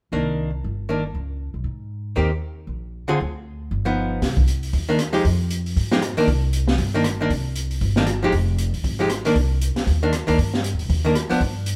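Recorded live in one room with light reverb, this cool, smoky fragment of small-group swing and bop at 234 BPM in C minor opens with a clean, picked hollow-body archtop guitar comping dark chords over woody pizzicato upright bass on steel strings, until at 4.2 seconds an up-front jazz kit joins with a boomy kick, a high-tuned snare, rim clicks and hi-hat under a rolled-off top.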